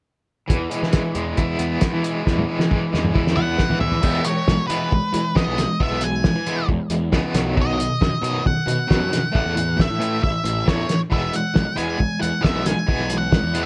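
Cloth-damped, thuddy drums sit up front in this upbeat, jangly indie rock excerpt at 136 BPM in E major, with a lo-fi, small-room sound, a fat snare, a tight kick, dark cymbals and a drum fill from 2.3 to 4.0 seconds. A crunchy overdriven guitar plays the riff with tremolo over a growly fuzz bass, and at 3.4 seconds an octave-fuzz lead guitar enters with a distorted melody. The production is dark with little reverb, and the chords move from E through B and A5 back to E.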